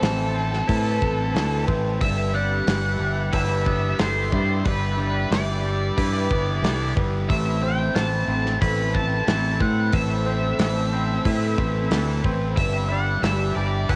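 Dreamy and wistful, this 14-second cut from a longer shoegaze and dream pop rock piece moves at 91 BPM in G major, with an octave-fuzz lead guitar carrying the melody through distortion and tape echo over a swirling, detuned phased analog pad, a shimmering fingerpicked twelve-string acoustic guitar playing arpeggios in the background, a thick fuzz guitar riff, a twangy electric guitar riff washed in reverse reverb, a growling overdriven fingered electric bass up front, and a loose indie drum kit with a tight kick and rolled-off top, set in the small room ambience of a cassette home recording as the chords move between Amadd9 and G6.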